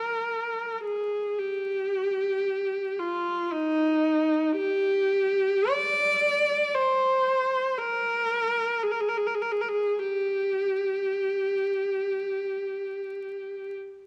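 Serene and nostalgic, this short classical passage, cut from a longer piece, features a single unaccompanied viola in a free, expressive style. The solo viola plays bowed lines from 0.0 to 13.7 seconds, moving between Eb4 and D5 with a rubato feel that lets the phrasing breathe. Its tone is rich and smooth, with vibrato, an even sound and a silky upper register, and it sits up front in the mix. Close, detailed microphones capture the instrument intimately, while a moderate recital hall reverb gives the sound a graceful sense of space. A vinyl crackle adds an aged, wistful patina that deepens the nostalgic mood.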